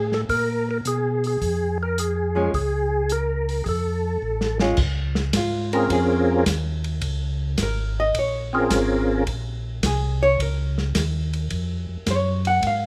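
A hollow-body jazz guitar, dark and clean, enters at 2.4 seconds and takes a solo from 4.8 seconds in this soulful, bluesy Bb minor soul jazz organ trio excerpt at 107 BPM with a swung feel, over a percussive, lightly overdriven tonewheel organ melody with key click, chorus vibrato and slow rotary speaker that stops at 9.2 seconds, a round, mellow organ bass line, and a dry, muffled, lo-fi drum kit with dark cymbals whose fill leads into the solo, all in light reverb.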